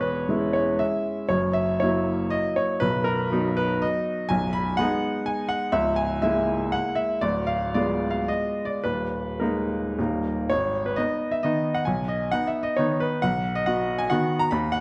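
Proud and rustic, this classical romantic dance in triple time moves on dotted rhythms with a free, rubato feel. A solo baby grand piano carries everything from 0.0 to 14.8 s, ranging from B0 up to B5 with a bright, brilliant and natural tone that sits up front. Its long sustain blooms into a wet recital hall reverb, giving the notes a spacious, resonant halo. The harmony drifts through darker, diminished colours and a suspended chord before a new section begins at 10.5 s and settles back onto a major close. Tuned slightly low at A4 = 435 Hz, the passage is cut from a longer piece.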